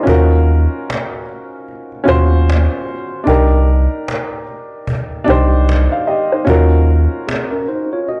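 A dark, woody upright piano opens this reflective, hazy lo-fi hip hop excerpt at 75 BPM, its short-sustain chords softened by cassette tape character and moving from Ebm9 to Cm9 and back. A deep, thick sub bass with tube saturation sits up front, while a distant cajon with faint snares adds a gritty, 12-bit sampler texture under a lazy 16th-note swing. At 7.3 seconds a mellow, clean tine electric piano enters as a second line, all within a small room ambience and a transformer-saturated sheen.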